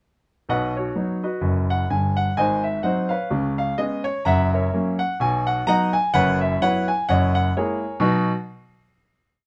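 A clear, vintage-toned grand piano plays a short, playful stride jazz piece alone, carrying a tune above its own swinging stride bass with a smooth, up-front sound and short sustain in light reverb, before settling on a final chord at 8.0 seconds.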